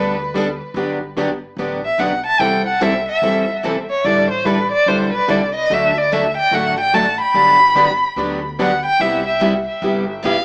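A warm, bowed violin carries a solo through the whole 10.4 seconds, singing with vibrato, soft attacks and expressive portamento, its line touched by tape echo and sitting up front. This swinging, charming fragment of acoustic jazz manouche moves at 146 BPM in G major, passing through chords such as Gmaj7, C6, A7sus4 and D. A picked, plugged-in parlour guitar plays close behind it, a bright concert guitar chimes further back, and a woody, thumpy pizzicato upright bass on gut strings anchors the low end, all in a moderate studio room with a small-speaker tone.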